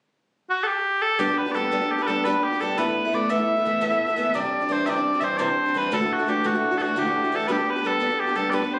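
Celtic folk slip jig in 9/8 at 114 BPM in G major, rollicking and bright, cut from a longer piece. Mellow small bagpipes carry the sweet, continuous melody with vibrato from 0.5 s, sitting up front with plate reverb, and a picked old ladder-braced acoustic guitar joins at 1.2 s with boxy accompaniment and audible finger squeak over chords moving from G through Asus2, Cadd9 and Dadd9 back to G. The sound is that of a phone recording in the room, with club reverb and compression.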